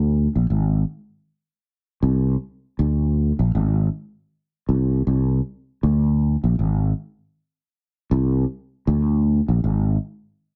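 Laid-back and serious, this reggae excerpt at 79 BPM in 4/4 with a swung sixteenth feel features a solo sustaining fretless electric bass, growly, punchy and up front with a lush chorus, playing low between Ab1 and D2 from 0.0 to 10.0 seconds, moving from one section into another at 5.8 seconds, in a dry, close 1970s-style studio sound with moderate reverb.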